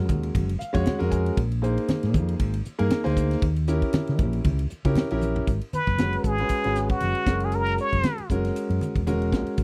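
A dry, close studio sound in a 1970s style frames this driving, slick piece of electric jazz fusion, cut from a longer performance and carried on a swung sixteenth-note feel. Up front, a fingered electric bass sounds round and amped, while a tight funk drum kit with a high-tuned snare and a tight kick plays hi-hat, ride, snare and toms in a natural small-room tone. Congas with thick, low-tuned skins and hard hands sit further back, adding a warm layer of percussion. A concert grand piano comps with an intimate, boxy character, deep bass, long sustain and audible action noise, and it opens with a fill at 0.4 seconds. After a drum fill at 5.2 seconds ushers in the second section, a trumpet with a plunger mute enters at 5.7 seconds for a brief solo, its brilliant wah-wah tone colored by vibrato and scooped, jazz-style notes.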